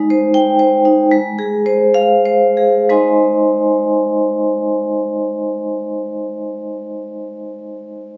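Warm and playful, this brief fragment of a contemporary classical piece for solo vibraphone moves in a rubato 6/8 at roughly 60-86 BPM in Ab major, slowing through its opening 2.9 seconds as the harmony passes from Abmaj7 to Ab6 before a new section settles on a plain Ab chord. Struck with medium hard mallets, the vibraphone has a metallic, ringing tone with medium motor vibrato and sits up front in the mix. The room sound, captured on a phone, carries a light club reverb.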